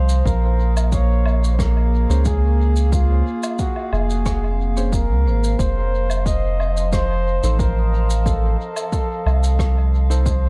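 Dark, hazy studio ambience frames this deep ambient dub excerpt in Bb minor at 90 BPM, moving from Bbm7 to F7 at 5.6 seconds. A veiled, bucket-muted trumpet carries the solo melody with light vibrato, gritty sampler texture and dub echo, over a warbling, detuned tape-like pad with chorus and reverb, a round sub bass sitting up front, and a punchy, layered electronic kick. Distant shaker, woodblock and rim clicks with dub echo, a metallic vibraphone ringing arpeggios with fast motor vibrato in the background, and very quiet, woody upright piano stabs entering at 2.1 seconds fill out the texture.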